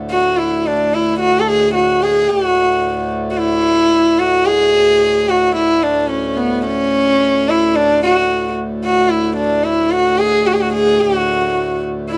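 Devotional and meditative, this Hindustani classical passage is a fragment lifted from a longer performance, moving with a straight pulse. A hand-pumped harmonium holds a low drone from the opening moment, its reedy, breathing tone sitting softly in the background. At 0.1 seconds a single bowed sarangi enters with the melody and stays up front, close and intimate, its rich voice carrying light vibrato, gentle attacks and gliding portamento. The airy quality of the bow and the shimmer of its sympathetic strings come through clearly under close, detailed microphones. Light reverb surrounds the sound as the music shifts into a new section at 2.3 seconds and continues until the fragment ends.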